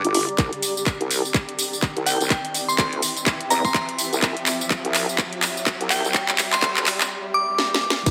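A nasal, resonant vowel-sweep wobble bass sits up front in this swaggering, aggressive bass house build-up at 125 BPM, its formant-filtered sine tone given tube saturation, chorus and sidechain pumping. Above it, a glassy FM synth bell carries the melody with chorus and delay, each crystalline strike decaying into a long release. A cloudy granular pad drifts beneath, its mellow, wave-folded triangle tone evolving and blurring under built-in reverb, also given sidechain pumping, before it stops at 7.1 seconds. A layered garage kit with a cracking snare, handclaps, hi-hat, tambourine and crash cymbal plays over a swung sixteenth-note feel, joined at 0.4 seconds by a tight electronic kick over a C chord, with drum fills running through most of the passage. A riser climbs until 7.1 seconds, where a break and a swell take over, all set in a moderate digital room that closes this cut from a longer piece.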